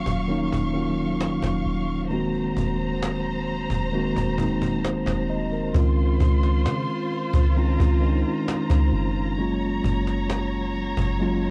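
A snappy, compressed cajon with snares keeps a slow, straight 66 BPM pulse in 4/4 alongside a deep, round 808-style bass, giving this short contemporary R&B fragment a sensual, moody feel. Up front, a mellow tine electric piano plays clean accompaniment through Ebm9, Ab9/Eb, Dbmaj7 and Gbmaj7, while a distant bowed string section holds expressive chords with vibrato and portamento. The dry home cassette recording adds a tape grain to the keys, strings and cajon.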